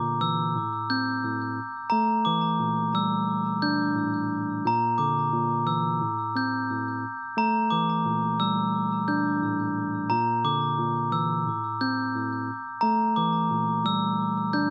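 Tough and moody, this hip hop excerpt sits in 4/4 with a swung sixteenth-note feel. A glockenspiel played with soft plastic mallets carries the melody high in its register, its bell-like, ringing tone placed up front and trailed by delay. Beneath it, a mellow tine electric piano supplies the accompaniment in a lower range, its clean, direct sound also close and present. Both parts play throughout the roughly 14.7 seconds, cycling through a short progression of Bb, Am7 and Gm69 that is heard three times. The pair sits in a small room ambience with light reverb, and filtering on each part keeps the sound focused and intimate.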